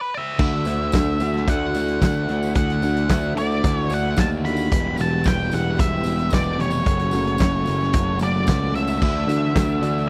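Indie rock at 111 BPM in D major with a jangly, wistful mood, this excerpt opens with a dark octave-fuzz lead guitar with slapback echo carrying the melody alone until 0.4 s, when a double-tracked fuzz guitar riff, a growly picked electric bass, a punchy, up-front loose indie drum kit with a rolled-off top, a jingly tambourine in the background and a very quiet, silky analog string pad with ensemble chorus and vibrato all come in over Dadd9, Emadd9 and F#m chords, captured in a dry, close 1970s-style studio sound.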